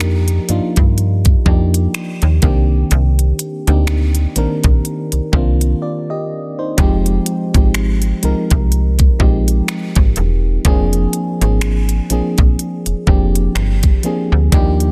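Longing and sensual, this excerpt of contemporary R&B moves at a slow 62 BPM in 4/4, with a 16th-note swing that gives it a lazy, sultry sway. A mellow, warbling FM electric piano with a vintage character and a noise layer carries the harmony from Ebmaj7 to Cm9, then on to Fm7 and Bb7/F. Underneath, a slap-like FM bass with a snappy, metallic attack sits up front in the low register. The trap drum kit pairs a knocking kick with crisp hi-hats and finger snaps, and soft clipping roughens the snare. A brief break from 5.8 to 6.8 seconds interrupts the groove before the Fm7 arrives. The whole excerpt rests in a digital ambience with a dense, heavily limited modern master.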